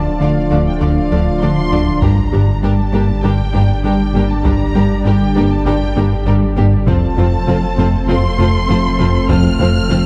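A brooding, futuristic hybrid orchestral and electronic film-score excerpt at 99 BPM in 4/4, tuned to A4 = 443 Hz, opens on Dm with a lush, focused violin section carrying the melody over close-miked French horn chords, a warbling, chorused analog pad, a tight sawtooth synth arpeggio, a smooth ring-modulated synth bass riff and a deep, round sine sub bass; at 0.2 s an expressive studio violin second line, violas, very quiet, distant cellos and very quiet double basses join, and a hard-stick taiko ensemble enters at 2.0 s as the chords move through Gm to F, all set in a dark production with moderate scoring-stage reverb.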